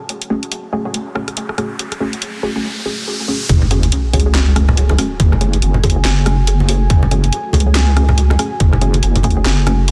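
A deep, up-front wobble bass built from square and sine tones, thickened with chorus, dominates this heavy, dark deep dubstep cut in F# minor, arriving with the drop at 3.5 seconds alongside a tight, layered electronic kick. Before that, a moody ambient pad holds sustained F#madd9 chords in the background, its sawtooth and triangle layers wave-folded and ring-modulated beneath chorus and built-in reverb, while a muted, detuned dub chord stab plucks short, mellow hits through a phaser and dub echo. A garage drum kit with a cracking, softly clipped snare, bright hi-hats, handclaps and rim clicks drives the 141 BPM half-time groove with a swung sixteenth feel. An electronic riser climbs from 1.4 seconds into the drop, where a sub drop impact lands, and low-tuned acoustic congas played with hard hands sit thin and distant in a small room. The dense, heavily limited master wraps it all in digital ambience, and the passage is cut from a longer piece.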